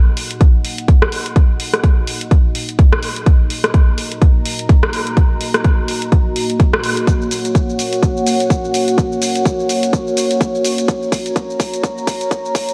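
Aggressive and gritty, this bass house cut from a longer piece builds throughout its 12.7 seconds, with a filter sweep spanning the whole excerpt and a deep, detuned analog pad holding a sustained E-flat minor chord through chorus, phaser and sidechain pumping, while a layered garage kit of hi-hat, rim click and shaker enters at 0.2 seconds beneath a punchy, up-front electronic kick, and a drum fill arrives at 7.1 seconds in a dark production with light digital reverb.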